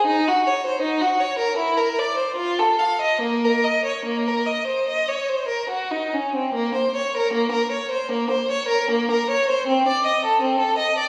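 Introspective and grave, this brief cut from a longer baroque-style suite movement for unaccompanied violin unfolds in Bb minor at a rubato 68-82 BPM in 4/4, with a single bowed violin, clear and focused with vibrato, sitting up front yet slightly distant within a concert hall's reverberant glow as it moves into a new section at 6.6 seconds.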